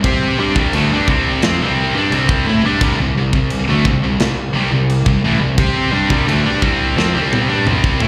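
Set in a straight 4/4 at 87 BPM, this short heavy metal cut from a longer piece moves with an epic, relentless weight. Two high-gain distorted guitars play riffs across the full 8.1 seconds. One is bright and picked, and the other is scooped and sits up front, both carrying slapback echo. A picked electric bass with fuzz and overdrive sits up front beneath them, warm, direct and amped. A tight, acoustic metal kit in a studio-room sound drives the piece with bright china cymbal, a medium-tuned snare, toms and a tight kick, and a drum fill arrives at 7.0 seconds. The whole piece comes across as a live gig heard through the venue's PA, with a recital-hall reverb around the band, opening on a C5 chord.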